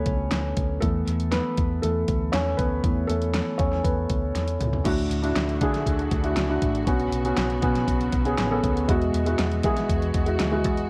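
Driving and earnest, this piano-driven pop fragment opens with an intimate felt-muted upright piano, its thick felt and audible action noise up front, over a dark, round, punchy muted electric bass and an overdriven, layered pop drum kit with a knocking kick and fat snare, before a drum fill at 4.4 seconds leads into a lush bowed string section with smooth vibrato entering at 4.9 seconds, all colored by light reverb and a worn, warbling cassette-tape pitch drift.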